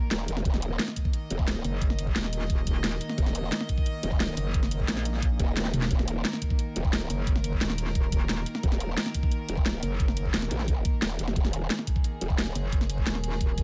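Dark technical drum and bass at 176 BPM in Eb minor, this mechanical, tense excerpt sets distant, floating bowed chamber strings with sidechain pumping beneath an up-front knocking electronic kick, an overdriven kit with cracking snare, bright hats and toms that plays a fill at 5.7 seconds, a growling, saturated formant-filtered bass with chorus and overdrive, and a metallic FM wobble bass with chorus that enters at 1.6 seconds, drops out at 10.5 seconds and returns for the final second, all set in a digital ambience.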